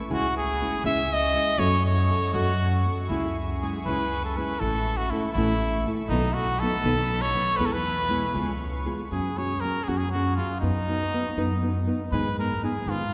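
Festive and proud, this mariachi-style Mexican folk excerpt moves at 80 BPM in a straight 6/8, with a clear, classical-style trumpet carrying the melody up front with light vibrato over fingerpicked nylon-string guitar and woody pizzicato upright bass. A biting, intense violin section holds bowed chords in the background until 9.1 s, when the harmony settles into F# major for the closing stretch. The whole ensemble sits in a long, wet cathedral reverb, as if played in a church or concert hall.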